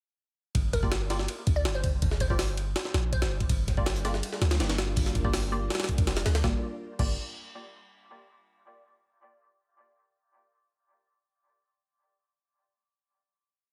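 Frenetic and dark, this short drum and bass and jungle piece in G minor runs at 163 BPM, with a gritty, heavily chopped, pitched-up jungle breakbeat up front over a deep, mellow 808-style bass line with tube saturation, a glassy wavetable pluck with chorus and dub echo playing short answering phrases from 0.7 to 3.6 seconds, muted, sparse dub chord stabs through phaser and echo, a silky vintage string machine pad entering at 3.9 seconds, and a very quiet, crunchy looped breakbeat tucked underneath, all in a dry mix that resolves on a final chord at 6.4 seconds.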